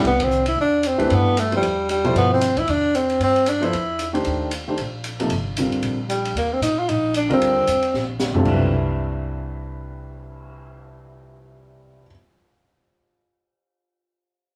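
A breathy, close-miked tenor saxophone carries an intimate, whispered melody up front in this spiritual, hypnotic modal jazz excerpt at 228 BPM in 4/4 with a swing feel, shifting from Cmaj9 to Ebmaj9 at 4.3 seconds over a grand piano with audible action noise, woody pizzicato upright bass and an open acoustic drum kit with dark cymbals, a high-tuned snare and a boomy kick, opening on a band accent, with a drum fill at 7.9 seconds before the saxophone stops at 8.2 seconds, all played live in one room with moderate studio ambience.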